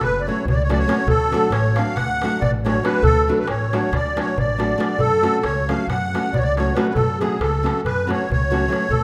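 Set in a straight 9/8, this restless, virtuosic Balkan wedding-band fragment is cut from a longer piece. A reedy, shimmering musette accordion carries the melody up front, its musette tuning and boxy small-room color giving it a distinctly folk character. A flamenco guitar enters at 0.3 s with fingerpicked accompaniment, acoustic and warm, with audible finger squeak. Beneath it, a woody, dark upright bass with steel strings plays pizzicato, while a metal-shell darbuka struck with hard hands sounds crisp, compressed and saturated. The harmony shifts at 1.1 s and returns to its opening chord at 5.0 s, and the whole ensemble sits in a wet recital-hall reverb.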